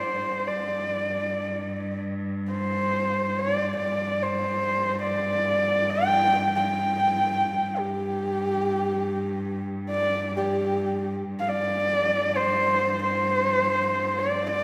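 A wet concert hall reverb with a 2.5-second tail surrounds this short cut from a longer piece of Mongolian folk music, played in free time and tuned to A4 = 443 Hz. Close and intimate, a single horsehead fiddle carries the melody between G4 and G5. Its bowed horsehair strings give a husky, nasal, slightly boxy tone with an airy bow, soft attacks, vibrato and portamento. Beneath it, one cellist holds a rich, smooth and even drone on G2 from a distant position, with its own vibrato, while the fiddle sits clearly up front. Both parts sound throughout, and the opening material returns at 11.3 seconds and runs to the cut at 14.6 seconds. The mood is solemn and vast.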